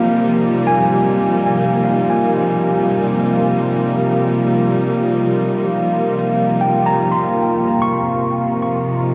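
In a straight 4/4 at 75 BPM, this reflective, melancholic ambient passage, cut from a longer piece and tuned to A4 = 438 Hz, drifts along as a single section lasting 9.1 seconds. A studio string section sits up front, holding sustained chords played sul tasto with light vibrato, soft attacks and a smooth, intimate top. Above it, a worn, slightly out-of-tune tine electric piano traces high arpeggios with delay, heard as if through built-in speakers. Alongside, an analog drone of sawtooth and pulse waves hums with a nasal, evolving, mellow character, shaped by pulse-width modulation and chorus, with a slow attack and long release. The harmony rests on Bbsus2 before moving to Eb5 at 7.8 seconds, and a huge, wet reverb with an 8.4-second tail wraps the whole in a dark, warm production.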